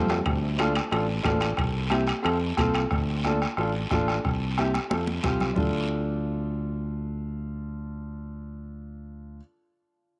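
A fiery, danceable cumbia in D minor at 180 BPM opens with a drum fill as a clear, woody upright piano with audible action noise and a round, up-front fingered electric bass play through a Dm, C and F progression, joined at 0.1 seconds by a soft-beater bombo, raspy guiro and ringing metal-shell timbales, with bright, high-tuned congas entering in the background at 0.3 seconds, all the percussion dropping out by 5.7 seconds to leave piano and bass under a moderate plate reverb in this short cut from a longer piece.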